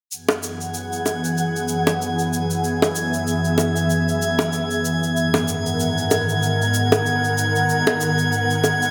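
Wistful and relaxed, this short sunset chillout excerpt at 95 BPM with a gentle 16th-note swing sets an ethereal, warbling pad, detuned and up front with ensemble chorus, holding sustained chords that move from F#9sus4 to G#m7 at 5.2 seconds, over tight, high-tuned bongos and a soft brushed shaker, while a glassy high texture of drifting overtones hovers above, all framed by a plate reverb and bright 1980s-style digital production.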